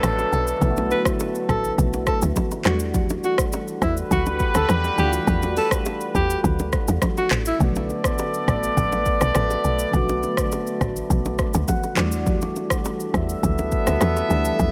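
A barely audible electronic downlifter opens this romantic, joyful afrobeats excerpt as a punchy, woody log drum bass, an up-front electronic drum kit with deep kick, dark hats, handclaps, rim click and shaker, and bright, close bongos and congas set the groove beneath soft, round electric-piano-like synth keys treated with chorus and phaser, a tight, clear horn section playing a second line, and sustained chords from a classical-style French horn section in the background, while a smooth alto saxophone with vibrato and digital delay carries the melody from 0.3 to 7.6 seconds and the keys add a brief fill at 11.4 seconds, set in a light reverb with a faint mains hum.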